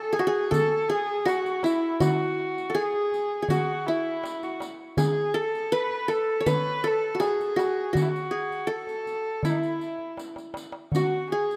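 A straight 4/4 groove carries this festive Turkish makam ensemble excerpt, where a mellow, bright-edged qanun played with fingerpicks sits up front with the melody. A rich, nasal, earthy kamancheh bowed by one player adds a second line with light vibrato and portamento. Underneath, a crisp, close metal-shell darbuka played with soft hands drives the pulse and drops a fill at 10.2 s, while a faint riq with dark jingles sounds distant in a large room, all in a rough home-demo mix with light studio reverb.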